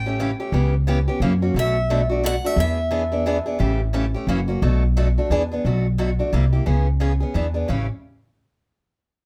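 Acoustic string swing in the jazz manouche style, charming and lively at 176 BPM in a swung 3/4 in A mixolydian, with a bright, plate-reverbed steel-string guitar melody that drops out at 5.3 seconds, a boxy archtop guitar picking up-front chords like A7, F#7 and Bm7, and a woody, thumpy pizzicato gut-string upright bass, all captured close and detailed in a light room reverb.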